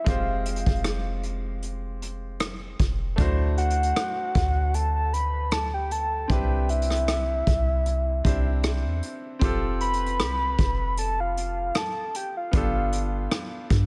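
A soft, round synth lead with a sub-octave layer, chorus and tape echo opens alongside a bright, brilliant concert grand piano in this tender, smooth contemporary R&B excerpt at 77 BPM, with a gentle 16th-note swing. A deep, boomy 808-style bass and a vintage brush kit of punchy kick, hi-hat and rim click join at 0.1 seconds, sitting up front in a small, natural-sounding room. The chords move from Fmadd9 through D9, Cmaj9 and Fadd9 to G9, with a shift into a new section at 3.2 seconds and a dry, close overall sound.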